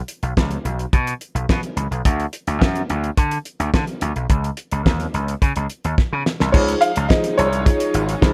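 The recording puts a dry, damped 70s drum kit up front, with its fat snare, tight kick and dark cymbals under gated reverb, beside a gritty, overdriven slap bass that sounds bright and punchy. This is feel-good, danceable early-eighties boogie funk in Db major at 107 BPM, moving over suspended chords until a drum fill leads into a lush Dbmaj9 at 6.5 s. There, a soft, felt-muted upright piano with audible action noise and slapback echo carries the melody over a mellow tine electric piano, while clear, bowed symphonic strings with vibrato sit in the background.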